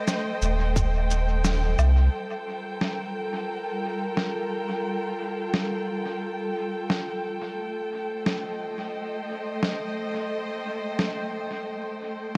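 A dark chamber string section holds bowed, vibrato-laden chords from the start, sounding distant yet expressive in this hazy, spacious ambient dub excerpt, moving from Am7b5 to Gm7 at 2.1 seconds and back at 7.6 seconds. A muffled, pitched-down electronic snare with cabasa and woodblock, filtered and trailed by dub echo, carries a swung groove, while a deep, round sub bass with tube saturation sounds only until 2.1 seconds and a tight, tape-tinged electronic kick lands once near 0.8 seconds. The whole ensemble accents together around 1.4 seconds, and a moderate echo-chamber reverb lends the piece its spacious air.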